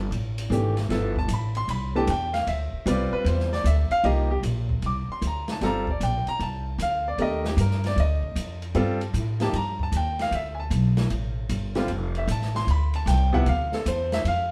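A woody, thumpy upright bass with gut strings sits up front in this cool, intense modal jazz excerpt, swinging in 4/4 beside a brilliant grand piano that also sits close. Behind them, an acoustic drum kit with dark cymbals, a medium-tuned snare, a boomy kick and hi-hat keeps the swing going at a lower level. The band plays live together in one room with moderate reverb, and the harmony moves from a suspended chord to a minor chord at 4.0 seconds and to another at 10.3 seconds.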